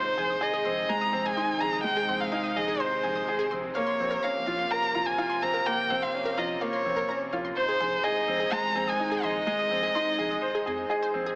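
A lush hall reverb and an AM-radio tone frame this hypnotic, intimate piano and strings electronica excerpt at 126 BPM, where an expressive, warm violin melody with vibrato and portamento sits up front beside a clear, present baby grand piano riff, while a detuned unison pluck traces punchy arpeggios through digital delay, a bright symphonic string section holds distant sustained chords, and a round, deep analog bass stays dark in the background across Ab/Bb and Bbmadd9 harmonies.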